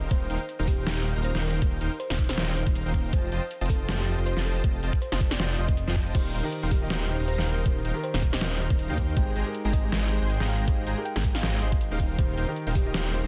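A huge, airy supersaw riff and a thick, detuned saw bass open this euphoric, lush future bass excerpt, both pumping under sidechain while the bass sits saturated and up front. A knocking electronic kick and a layered dubstep kit with a deep snare, metallic hats and crashes arrive almost at once, driving a swung, half-time groove that sounds re-recorded in a small room. Floating in the background, a round, tine-like synth pluck carries the melody with a gentle, dark FM tone, its chorus and dub echo trailing each note into a long release. At 6.1 seconds a natural grand piano joins behind the mix as accompaniment, pumping along with the synths. The harmony moves from Eb6 to F7, back to Eb6, then to Abmaj7 before settling on Eb6 again, all wrapped in digital ambience and a dense, heavily limited modern master.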